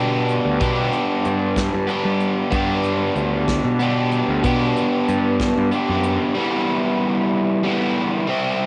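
A crunchy, double-tracked overdriven guitar riff sits up front in this upbeat yet wistful indie rock excerpt at 62 BPM in a straight 6/8 in G major, tuned to A4 = 436 Hz, joined by a round, fuzzed-out picked bass and a soft brush kit with a punchy kick and medium-tuned snare until both stop at 6.2 s, after which the guitar carries on alone as the harmony moves from G to E minor, all wrapped in light reverb and the muffled, tape-dulled sound of a home cassette recording.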